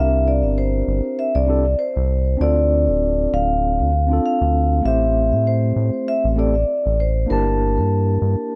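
Swung sixteenths at 98 BPM in 4/4 give this brief, wistful and relaxed sunset chillout passage its easy sway: a soft-mallet vibraphone carries the metallic, ringing melody up front through digital delay, a mellow tine electric piano accompanies with clean tone, vintage 12-bit sampler grit and its own delay, and a deep, dark analog bass sits forward beneath them, all over a light small-room reverb as the chords move from C7 to Dm7, Am7 and Gm69.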